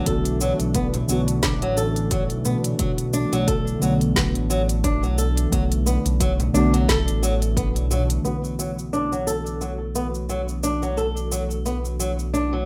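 This organic downtempo excerpt moves at 88 BPM in 4/4 with a gentle 16th-note swing, and its mood is meditative and mystical. Up front, a dark, boxy flamenco guitar plays fingerpicked arpeggios with audible finger squeak and a low-pass filter and digital delay. Beneath it, a smooth, sustained synth bass with ring-modulated sawtooth and square tones pumps with the sidechain. Muted, felt-like synth keys with a noisy 12-bit sampler grit, chorus and phaser sit in the background beside a detuned analog pad with a soft attack and long release. The drums combine a produced afro-pop kit, with a woody snare, crisp hats and cabasa, and a deep electronic kick that stops at 7.7 seconds, while a small, bright, very quiet frame drum enters at 0.9 seconds. The harmony rests on D69 over A until the bass note shifts to B at 8.2 seconds, where a filter sweep colours the guitar, all in a moderate room reverb and a rough home-demo mix.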